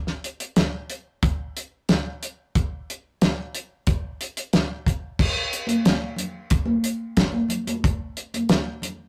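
A damped 70s drum kit with a fat snare, tight kick and dark cymbals sits up front in this hypnotic, trippy rock excerpt, joined at 5.7 seconds by bright, high-tuned congas played with hard hands, all captured in a rough rehearsal-room recording with saturation and a small, wet room reverb.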